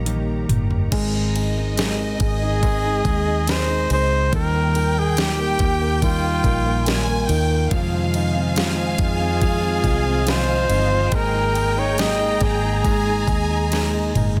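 Tender and heartfelt, this straight 4/4 pop ballad excerpt sets an up-front, vibrato-rich flugelhorn melody entering at 2.2 seconds over a deep-toned grand piano, dark clean electric guitar arpeggios with warbly pitch drift and delay, a round, punchy foam-muted bass, a produced R&B drum kit with knocking kick, deep snare and metallic hats opening and closing on fills, a smooth, even violin section carrying a second line, and lush, focused studio strings that return at 7.7 seconds as the chords move from Abadd9 through Fm7 to Absus2, all in light small-room reverb and a dense, heavily limited master.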